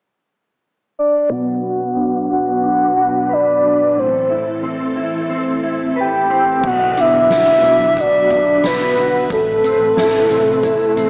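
A round, up-front octave-layered synth lead with chorus and tremolo carries the melody from 1.0 seconds in this dreamy, ethereal dream pop excerpt, over full-bodied sawtooth string-machine violas with phaser and clean, compressed electric guitar arpeggios under a filter sweep, moving between Bm and Amadd9, before a soft-mallet drum kit with dark cymbals and a foam-muted bass in the background join at 6.6 seconds and a glassy harmonics texture drifts in at 7.2 seconds, all in a gritty, small-speaker recording with light small-room reverb.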